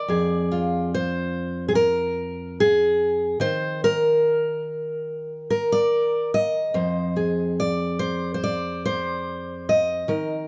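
Set in an unhurried, straight 4/4, this brief excerpt of wistful, haunting folk features a lone fingerpicked steel-string acoustic guitar, warm and up front with a light auditorium reverb, moving between F minor and a chordless stretch before settling back on F minor over its 10.5 seconds.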